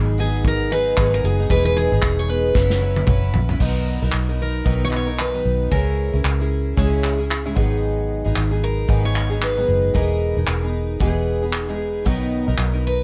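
Carefree and heartfelt, this acoustic pop excerpt moves at 114 BPM in B major with a 16th-note swing, built on a shimmering, octave-doubled twelve-string acoustic guitar and a dark, round, foam-muted vintage electric bass sitting up front. A bright, full-bodied steel-string acoustic guitar carries the melody from 0.2 seconds with audible finger squeak, while a punchy modern studio kit with handclaps, tambourine and toms pumps in its room and plays a fill from 2.6 to 3.6 seconds into the next section. Chords drift from G#m7 and Emaj7 through F#7sus4 to Bmaj7, all in a dry, close sound.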